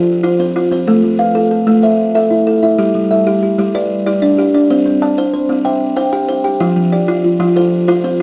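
A worn, warbling cassette sound with gentle pitch drift and light reverb wraps this short cut from a longer piece of southern African traditional music in G mixolydian, moving at 126 BPM in a rolling 12/8. Two kalimbas play rippling arpeggios together from start to finish over chords that pass through F, Am, G and C: the buzzing kalimba sits close and up front with a bright, woody thumbnail pluck, while the second, softer kalimba adds a mellow fingertip ring beneath it. The layered patterns give the whole passage a hypnotic pull.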